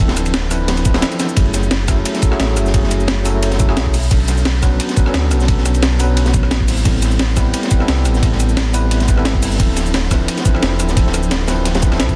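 A rolling liquid drum and bass groove at 175 BPM in 4/4, with a light 54% swing on the sixteenths, drives this melancholic clip cut from a longer piece. Three drum parts run together throughout: a thumpy, gritty electronic kick sits loudest in the kit, a pitched-up, compressed sampler-style breakbeat kit supplies cabasa, hi-hat, ride, rim click and a medium-tuned snare, and a crunchy, saturated acoustic breakbeat kit adds a high-tuned snare, dark cymbals and hats in a small room, high-pass filtered and rolled off at the top. Underneath, a deep, sine-like sub bass with an added octave holds a full, sustained, up-front low end between D1 and D2. A worn, slightly out-of-tune tine electric piano, heard through built-in speakers and trailed by tape echo, carries the minor-ninth chords from Dm9 through F#m9, Bm9 and Am9 before returning to Dm9 at 9.6 s. Light reverb surrounds a dense, heavily limited modern master.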